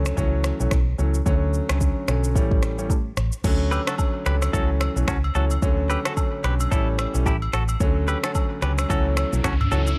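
An afrobeats excerpt at 110 BPM in D major, romantic and sunny, with a swung 16th-note feel over chords of F#m7, Dmaj7 and A7. A clear, intimate grand piano with audible action noise and long sustain carries the accompaniment beside a dark, round, foam-muted electric bass and an electronic afro-pop drum kit with a deep kick, crash cymbal, finger snaps, rim click, shaker and toms, with bass and drums both up front. At 3.7 s a bright, twangy, compressed clean electric guitar riff enters with tape echo, joined by close, dry agogo bells and woodblock in the background, and an electronic riser appears at 9.0 s in a mix with little reverb.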